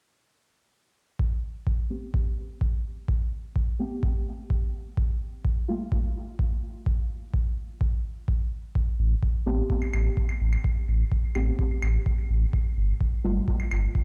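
Hazy and meditative, this dub techno excerpt in A minor at 127 BPM sets a deep, up-front analog kick under dark, detuned chord stabs drenched in chorus, phaser, dub echo and a filter sweep, moving between Am9 and Gm9, before a round sine sub bass arrives at 9.0 seconds and overdriven claves with dub echo join at 9.8 seconds, all played back through a big sound system in a bare stone room.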